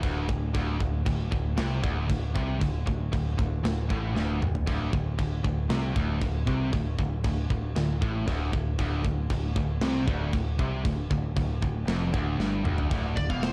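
A heavy, relentless heavy metal excerpt opens with the rhythm section and rhythm guitars all at once on a low D5 power chord: the growling, overdriven electric bass and a tight acoustic drum kit sit up front, while two picked high-gain guitars, one of them scooped, grind out the riff further back. A sludgy, double-tracked overdriven guitar doubles the riff very quietly underneath, thickening the low end. The drums hold a half-time feel, with a medium-tuned snare, tight kick, toms and crash, and a rolled-off top that keeps the kit from sounding harsh. Short drum fills mark the phrases, the second leading into a break at 12.9 seconds, after which a bright distorted lead guitar slips in at 13.2 seconds just before the cut. The dark production and small-room ambience give the whole passage a dense, brooding weight.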